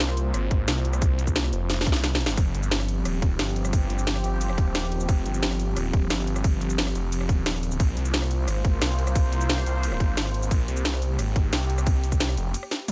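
A straight 4/4 drum and bass pulse drives this cut from a longer piece of dark technical drum and bass at 177 BPM, with an overdriven, tight electronic kick entering at 0.5 seconds and an up-front kit of cracking snare, bright hi-hats, ride, rim clicks, shaker and toms rolling through a fill at 1.7 seconds before a break at 12.5 seconds. Underneath, a snarling distorted saw bass growls low with detuned unison layers, tube saturation, a moving notch and sidechain pumping, giving the futuristic mood its aggressive bite. A sweeping resonant pad sustains chords on Bb5 and F5 with a slow attack, chorus and a filter swell, all set in a digital ambience.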